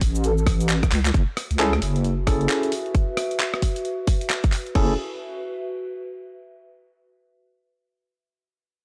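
Skippy and soulful, this short cut of two-step UK garage moves at 133 BPM in F# minor, its 16ths swung at 61% in 4/4. It opens on a drop with a drum fill at 0.9 seconds, as a tight, up-front electronic kick sits under a compressed, gritty sampler-style breakbeat kit of crash, handclaps, hi-hat, rim click and shaker. A deep, dark wobble bass made of detuned square and sine tones rides low with chorus and transformer saturation, while the harmony moves from A through F#m9 and Bsus4 toward F#7. A barky tine electric piano enters at 1.6 seconds with bright, lightly overdriven stabs pushed through tape echo. A warbling, nostalgic lo-fi pad drifts in softly behind at 1.9 seconds, its slow attack pumping with sidechain under chorus and its own reverb, and it lingers alone after the drums and bass stop. The whole recording has a dry, gritty hardware-and-cassette character with only light digital ambience.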